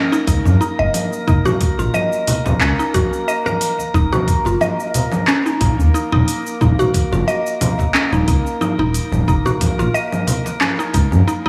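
A lightly swung 90 BPM groove in 4/4, built on a gritty, thumpy electronic kick, an overdriven deep house kit of cabasa, handclaps and metallic hats, and soft-handed congas in the background, carries this mystical organic downtempo excerpt in Eb minor, where a smooth, dark gliding synth bass sits up front beneath woody, round mallet-like pluck arpeggios treated with chorus, phaser and tape echo, while a glassy, drifting harmonics texture hovers from 0.0 seconds in a lush hall reverb over chords moving from Gb to Eb5 at 3.9 seconds and back to Gb at 9.3 seconds.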